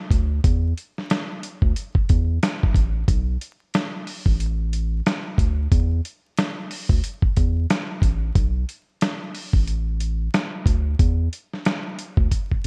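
Tough and dark, this boom-bap hip-hop excerpt moves at 91 BPM with a 16th-note swing, pairing a gritty, compressed sampler-style drum kit, with its thumpy kick, medium-tuned snare, hi-hat and gated reverb, against a round, deep analog bass with a wave-folded edge and sustained notes, both up front in a dry, bright 1980s-style digital production dusted with vinyl crackle, before a drum fill at 12.3 seconds.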